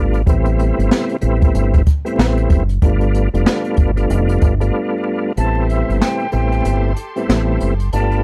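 Boom-bap hip-hop at 94 BPM in A minor, this reflective yet tough excerpt from a longer piece rides a swung sixteenth-note feel in 4/4. A tonewheel organ with chorus vibrato and a fast rotary speaker supplies smooth, up-front accompaniment through a cassette-tape haze, moving from Am9 to G9. Beneath it, a deep dub fingered electric bass sits dark and round, its low notes thickened by transformer saturation, while a jazz brush drum kit brings a high-tuned snare, boomy kick and hi-hat from 0.1 seconds. After a break at 4.7 seconds, the kick drops out from 5.4 seconds as a breathy silver concert flute enters with a close-miked, expressive melody, and a lush, bowed string section holds chords in the background. The whole recording is dry and gritty, with vinyl crackle and little reverb.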